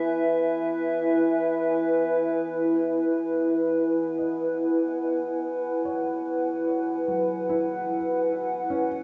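In a straight 4/4 at 72 BPM, this serene, weightless ambient excerpt in E major opens on a warbly, detuned tape-like pad holding up-front chords with chorus and a filter sweep before moving from E to Emaj7 at 2.5 seconds, while a soft, muted felt upright piano fades in with arpeggios from 4.2 seconds through a diffuse delay, all set in a huge, dark, warm reverb.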